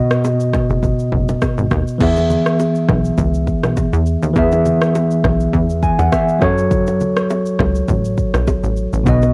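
Afrobeats with a breezy, sunny mood and a light swing, cut from a longer piece and heard as a home cassette recording in a digital ambience. A clean tine electric piano sits up front with a cassette-tape tint and plays a fill from 5.5 to 6.7 seconds, while an electronic afro-pop drum kit with a deep kick, rim click, shaker and crash cymbal carries the same tape colour. A punchy, funky plucky analog bass with a sawtooth and square-wave filter pluck enters at 0.7 seconds up front, and bright, close, dry bongos and congas sit in the background as the chords move from B to E to F#m.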